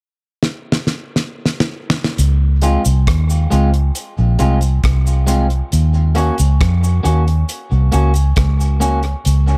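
A dry, damped 70s drum kit opens this laid-back, spacious dub reggae excerpt with a fill from 0.4 s, its fat snare and tight kick sitting up front with hi-hat and rim click. At 2.2 s the harmony settles on Dbmaj7, later moving to Ebm7, as a dark, round, foam-muted fingered bass enters up front, joined by a distant cabasa on tape echo and, from 2.6 s, a slightly broken-up, compressed picked electric guitar that also carries tape echo. The echo-heavy mix sits in a small room ambience.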